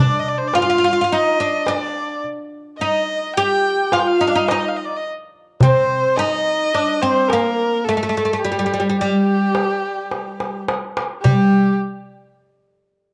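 A homemade cassette recording in a small room, with moderate spring reverb, carries this soulful, longing fragment of a Turkish makam ensemble in G makam ussak, tuned to A4 = 443 Hz and moving at 107 BPM in a straight 10/8. Up front, a woody, fretless oud with double strings, plucked with a plectrum and colored by cassette tape, carries the melody, while a focused, bowed kamancheh traces a second line above it with vibrato and portamento. A crisp metal-shell darbuka played with soft hands joins at 0.5 s and drives a fill from 10.1 s, just before a new section opens and all three parts stop at 11.8 s.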